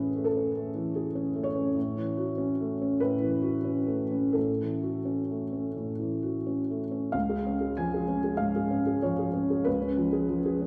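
Neoclassical minimalist piano with an intimate, hopeful mood, this short fragment is cut from a longer piece and moves with a loose, rubato pulse in 4/4. A felt-muted upright piano plays alone from start to finish, spanning C#2 to G#5, its tone soft, dark and boxy and placed up front. The harmony opens on Amaj7 and shifts to F#m7/A at 1.8 seconds, then the passage moves into a new section at 7.1 seconds, landing on C#. A generous scoring stage reverb with a 1.9-second decay surrounds the instrument, giving the close, mellow sound of the piano the ambience of a church or concert hall. The overall level is gentle and subdued.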